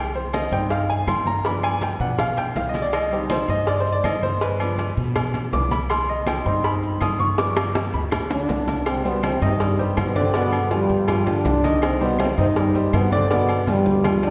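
The recording has the lush, reverberant sound of a church or concert hall, framing a fiery, driving salsa excerpt in C harmonic minor at 162 BPM with a straight 4/4 feel. A clear, natural baby grand piano sits up front and carries a solo through the opening, moving between Cm and G7 over a thumpy pizzicato upright bass with a dark steel-string tone. Percussion fills out the groove, with bright, damped, low-tuned congas, high-tuned cowbell and bongos, and woody claves in the background, while ringing metal-shell timbales and agogo bells and grainy, mellow maracas sound close and dry. A drum fill arrives at 7.4 seconds, and at 8.3 seconds a punchy trombone section enters up front with the melody, its smooth top and light vibrato giving it a tight, pop-style polish. The same two-chord cycle carries on beneath the horns until another fill closes the passage.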